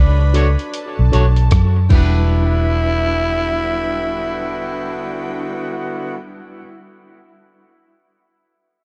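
A raspy, gritty tenor saxophone carries the melody over a bowed, reedy violin section and a round, foam-muted electric bass in this longing, bittersweet lovers rock reggae excerpt at 77 BPM in E minor, with swung sixteenths and tape echo on the saxophone and strings. At 0.3 s a bright tine electric piano, twangy guitar stabs in the background and a muffled, pitched-down sampler-style drum kit with a thumpy kick, hi-hat, rim click and crash come in. A soft-attack horn section with vibrato joins at 1.9 s as the chords move from Bm9 to Em9, and the drums drop out at 2.1 s, all in a dark production with light reverb.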